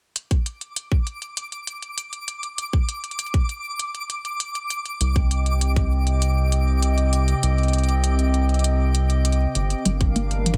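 IDM at 99 BPM in a straight 4/4, this short cut from a longer piece feels intricate and cerebral. Smooth electronic hi-hats and a tight, up-front electronic kick open the track, joined by a twinkling granular texture high around D6 that shimmers an octave up through its own built-in reverb and pumps against the sidechain. At 5.0 seconds the harmony settles on C minor as a rubbery, bouncy square bass, dark and tube-saturated, arrives beside a hollow, flute-like pad that sustains soft, detuned chords under a mellow chorus. The kick drops away at 5.9 seconds and returns at 10.0 seconds. In the final moments the chord moves to G minor seventh, and a deep, resonant acid bass traces plucked arpeggios through a digital delay, all set in a digital ambience.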